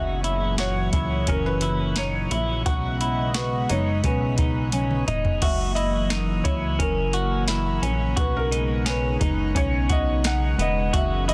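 A soft vintage rhythm box sets a straight 87 BPM pulse in 4/4 from 0.2 s, with a deep kick, crisp snare, metallic hats, toms and crash, and a drum fill at 4.7 s leads back into the repeated phrase, while a punchy, plucky analog bass in the low register anchors the alternating F#7 and B69 chords of this dreamy, blissful dream pop piece in B major. A smooth analog pad with slow attack and chorus holds sustained chords alongside a dark, clean semi-hollow electric guitar playing arpeggios through lush chorus and digital delay. On top, a felt-muted upright piano carries an intimate, mellow melody with digital delay, all set in light reverb and a dense, heavily limited modern master.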